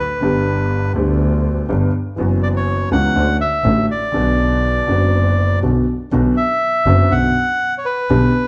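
Tense and melancholic, this rubato tango in B minor at 122 BPM sets a dark, reedy bandoneon melody up front over a worn, woody, slightly detuned upright piano and a close, earthy bowed double bass with light vibrato and a biting, nasal edge, all moving through G, F#7sus4, Dmaj7 and Bm in a large, reverberant studio before the music shifts into a new section at 6.1 seconds.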